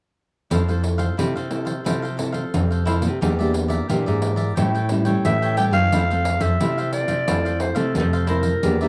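Samba and choro in F major at 89 BPM, this short, playful and lively excerpt is cut from a longer piece. A crisp, picked cavaquinho and a deep, full-bodied, fingerpicked nylon-string guitar sitting up front share the accompaniment from 0.5 s, while a second, full-bodied nylon-string guitar plays the bass line, and a jingly pandeiro rounds out the rhythm section. The harmony moves from Fmaj7 through Em7b5 and A7 before returning to Fmaj7. At 5.3 s a growling clarinet enters with the melody, raspy and gritty in a jazz style with light vibrato, sitting up front as the soloist. Finger squeak on the bass guitar's strings adds an intimate touch to the dry, close sound of a 1970s-style studio in a small room.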